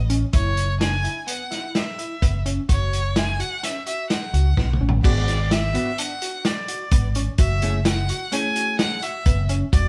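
A bowed violin with vibrato leads this brooding excerpt of progressive instrumental band music, its focused, smooth-topped line sitting over a tight sequenced synth whose detuned sawtooth and square-wave arpeggios pluck through a chorus effect. A round, dark fretless electric bass and a muffled, lo-fi vintage drum kit with a punchy kick and a rolled-off top sit up front, giving the uneven 5/4 meter a driving, straight feel. A drum fill leads into a new section at 5.0 seconds, where a clean, picked hollow-body archtop guitar adds dark accompaniment until 9.0 seconds. The harmony moves from an F# bass under the opening melody to half-diminished and minor seventh chords in the second half. The band plays live together in a stone room with a moderate reverb.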